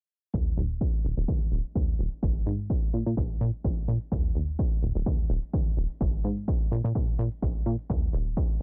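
A punchy electronic kick drum and a plucky analog bass arrive together at 0.3 seconds, opening this short, bittersweet and soulful piano house excerpt at 127 BPM in 4/4 with a light 16th-note swing. The bass sits up front, a funky blend of sawtooth and square wave tones with a fast attack and decaying filter pluck, ranging from Eb1 to Bb2 and pumping through sidechain compression. A filter sweep runs across the bass for the whole passage, and the mix as a whole sits under a low-pass filter with little reverb. The kick is analog and forward, re-recorded in a large room, as is the very quiet electronic hi-hat that also enters at 0.3 seconds. A tambourine, also very quiet and present from the same moment, adds close, dry acoustic texture with hints of tube shaker and group handclap. All four parts carry through to roughly 8.5 seconds, forming a single groove-driven section.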